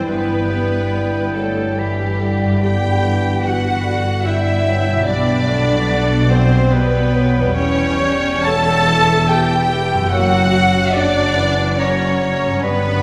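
A solemn, elegiac orchestral movement in E minor begins with the whole ensemble sounding together, moving slowly at 72 BPM in 3/4 with a rubato feel. An up-front violin section plays a smooth, even second line with vibrato. A very quiet, focused violin section carries the melody, while a clear oboe adds a light-vibrato solo line above. Beneath them, a lush viola section and a dark, distant bassoon supply the accompaniment, a horn section holds sustained chords in the background, and a very quiet concert harp adds ringing fingerpicked arpeggios. Rich bowed cellos and soft-attacked double basses anchor the bass from the background as the harmony passes from Em/G through G/B and C#dim/E to F# at 10.1 seconds. A wet church reverb lends a spacious hall bloom to this 13-second passage, cut from a longer piece.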